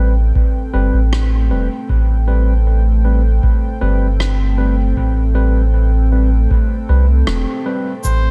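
A dark, chorused analog pad, bright tine electric piano stabs trailing dub echo and a round, up-front sub bass open this hazy, spacious ambient dub excerpt on an Am9 chord, soon joined by a deep, tape-warm electronic kick with studio reverb and a faint, natural rim click and shaker in a small room ambience, before a veiled, cup-muted trumpet with light vibrato and dub echo slips in at 8.0 s.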